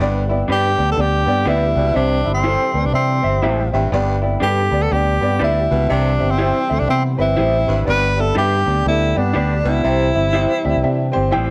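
A breathy, whispered tenor saxophone carries the intimate, jazz-style melody with vibrato and scooped notes up front, over a round, amped fingered electric bass, a dark, woody upright piano, a distant, raspy baritone saxophone riff, a lo-fi electric guitar through a small old amp adding stabs in the background, a very quiet electric guitar riff at the edge of break-up and faint tonewheel organ chords with key click, all in a danceable, swung soul groove moving between G and C in a small room, cut from a longer piece.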